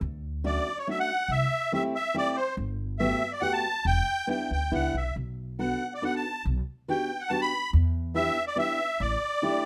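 Opening on a woody, thumpy pizzicato upright bass, this charming, whirling musette waltz in a rubato 3/4 soon brings in a full-bodied fingerpicked jumbo acoustic guitar at 0.4 seconds and a reedy, shimmering musette accordion carrying the melody up front from 0.5 seconds, all set in moderate studio reverb over extended chords in a short cut from a longer piece.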